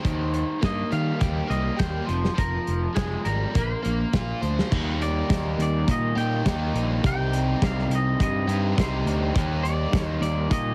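A growly, fuzz-soaked picked electric bass sits up front in this restless, cool indie rock excerpt at 103 BPM, joined by a bright, scooped, double-tracked overdriven guitar riff and a muffled, lo-fi drum kit with dark cymbals and a punchy kick, while a twangy clean guitar melody enters at 0.6 s over chords moving from Fmadd9 to Bbadd9 before shifting at 4.7 s to Ebmaj7 and Cm, heard through a heavily compressed, radio-like small-room sound.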